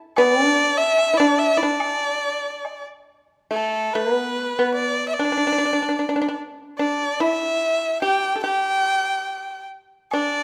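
Rubato and graceful in 2/4 at 72 BPM, this pastoral Chinese chamber ensemble passage, cut from a longer piece, sets a single bowed erhu up front, carrying the melody in D zhi mode with a bright, nasal, earthy tone, light vibrato and portamento. Beneath it, a mellow, dry pipa played with fingerpicks adds a percussive second line. A close woodblock sits in the background from 0.2 to 2.8 seconds and returns briefly at 10.1 seconds, and the ensemble is heard in a moderate recital hall reverb.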